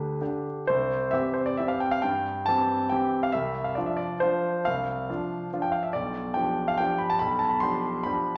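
A clear, polished concert grand piano plays alone, up front and intimate, with deep bass, long sustain and audible action noise across a range from B1 to C6. This graceful, sparkling classical waltz in 3/4 and C major moves with a rubato feel between 120 and 151 BPM, its harmony shifting from G to C, then Dm7/C and G7/B. A wet recital hall reverb surrounds the instrument in this 8.4-second fragment cut from a longer piece.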